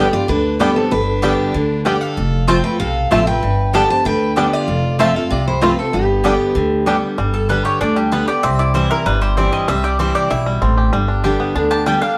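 A bright, up-front picked steel-string acoustic guitar carries the melody in this lively, virtuosic bluegrass passage, cut from a longer piece. It moves at a brisk 192 BPM in straight 4/4 in G mixolydian. A twangy, percussive banjo played with fingerpicks adds its own melody line throughout. A clear, focused fiddle with light vibrato bows a second line beneath the lead guitar, and both drop out at 6.8 seconds. Beneath them, a full-bodied dreadnought guitar picks the accompaniment, and a thumpy, dark upright bass anchors the low end as the harmony alternates between G and F, then moves to C and back to G. The woody, double-strung mandolin plays stabs from the start and takes a solo from 7.2 seconds. The whole ensemble is heard from further back in a room with moderate studio reverb.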